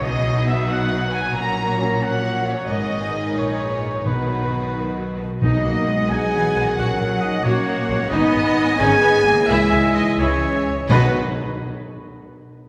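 A dark, distant French horn section enters at 5.4 seconds with sustained chords, joined there by a bright clarinet, a clear oboe and a pure concert flute carrying very quiet second lines in this adventurous, heroic cinematic fragment in 6/8. Underneath, bowed string sections sing with vibrato throughout: a violin melody with portamento, a rich second violin line, a lush viola accompaniment, and a smooth-topped cello section and soft-attacked double bass section sharing the bass. A ringing, thumb-plucked harp spins arpeggios, a tight trumpet section adds stabs, a warm trombone section holds chords, and timpani sound in the background, while the pace broadens from 7.4 seconds and the whole ensemble sits in a wet church reverb.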